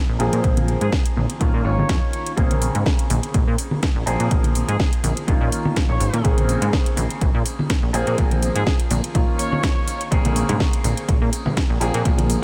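A vintage grand piano with phaser and gritty sampler texture opens this groovy, funky slice of filtered disco house, joined by an up-front, plucky analog bass with a sawtooth bite, a punchy electronic kick, a house kit of cracking snare and metallic hats, distant tambourine and congas, and a bright, vibrato-laced horn section in the background from 0.8 to 10.1 seconds, with a filter sweep running through the whole excerpt as sidechain pumping breathes through the bass, piano, hats, percussion and horns.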